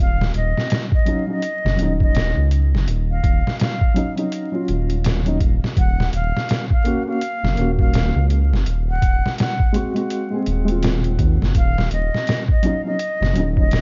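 A swung 83 BPM groove of gritty, pitched-down sampler drums with a thumpy kick drives this brooding, cinematic trip hop excerpt in Eb dorian, as a deep, rumbling detuned saw bass with tube saturation sits up front, a felt-muted upright piano enters at 1.1 seconds with tremolo and tape echo over chords moving from Ebm7 through Gb/Eb and Ab7/Eb, and an airy jazz flute with vibrato, lo-fi sampler grit and tape echo floats softly above, inside a dark small-room production with vinyl crackle.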